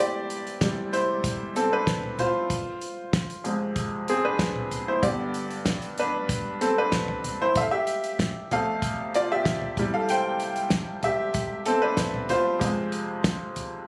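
A bright upright piano leads this hopeful, uplifting piano-driven pop piece, taking a solo across the whole 13.9 seconds with a woody, intimate tone, audible action noise and a slightly detuned character, placed up front and present. It sits at 95 BPM in 4/4 with a straight feel in C major, ranging from F2 to G5 over a progression of C, Fm, G, F, then back to C and Fm. A damped 70s drum kit enters at 0.3 seconds with hi-hat, kick, snare and toms, its acoustic, dry sound built on a fat snare, a tight kick and a rolled-off top, also sitting up front. The sound has the closeness of a phone recorded in the room, dressed with light studio reverb and compression. The passage is cut from a longer piece and stays within a single section, ending on the Fm chord.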